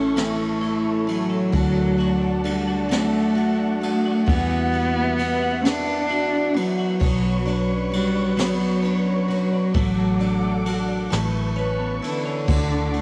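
A tender, heartfelt pop ballad in a lilting 6/8, this short passage from a longer piece has a homespun feel, recorded at home on cassette in a small room. Up front, a dark, woody solo cello carries the melody with bowed vibrato, its distant tone touched by tape echo. Beneath it, a bright, double-tracked steel-string acoustic parlour guitar with fresh strings is picked, while a compressed, twangy twelve-string electric guitar spins clean arpeggios in the background until 12.6 seconds. A muted studio string section holds lush, veiled chords con sordino, and a round, foam-muted electric bass anchors the low end. Entering at 0.2 seconds, a jazz kit played with brushes adds a high-tuned snare, boomy kick and dusky ride and crash cymbals, as the harmony drifts through colourful add9 chords before settling home.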